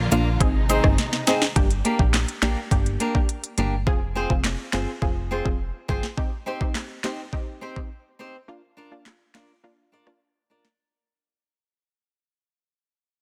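An overdriven island pop drum kit with a knocking kick, sharp snare and crisp hats drives this tough, sultry dancehall excerpt, joined by a fingerpicked flamenco guitar with audible finger squeak, detuned sawtooth chord stabs with chorus and sidechain pumping, a funky plucky analog bass that stops at 6.0 s, a bowed string section with vibrato and portamento, and a close, dry cabasa and woodblock in the background, the strings and percussion dropping out as a drum fill from 1.0 s gives way to a fade-out at 1.6 s.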